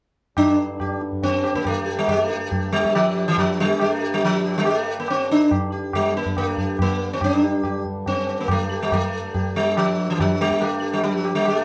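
A bright, buzzing sitar carries the melody up front, its plucked notes shimmering with sympathetic strings in a meditative, longing Hindustani piece in raga kafi on G, moving at 141 BPM in a straight 4/4. Beneath it a reedy, close-miked pedal harmonium holds a full, breathing drone, while a high-tuned tabla with a short ring keeps time, all three sounding together from 0.4 to 11.6 seconds. The production is dark, with a wet studio reverb, and the recording is cut from a longer piece.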